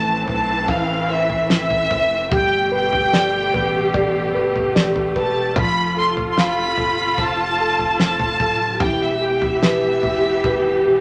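Heartbroken and melancholic, this slow pop ballad excerpt in A minor at 74 BPM sets a rich, lush violin section singing the melody over a dark, woody, slightly detuned upright piano, expressive studio strings with vibrato and portamento holding sustained chords, a deep saturated sub bass, and a damped 70s drum kit with a fat snare and tight kick entering at 0.3 seconds, all moving through Am, Gadd9, F and Em in a wet studio reverb.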